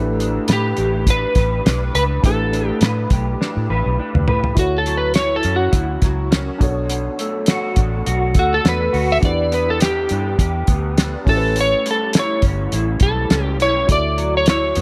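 A slightly broken-up, lo-fi electric guitar with ensemble chorus and vibrato opens this hazy, laid-back indie and bedroom pop excerpt at 103 BPM in D major, alongside a woody, slightly detuned upright piano with cassette-tape colour in the background and a round, foam-muted fingered bass up front, before a dry, cloth-damped drum kit with a fat snare and tight kick enters at 0.2 s, a clean lap steel with analog chorus and delay takes the melody at 0.5 s, and after a drum fill a slide guitar solo runs from 4.6 s over Dmaj9, Bm7, Em7 and A7 chords with a light 16th-note swing.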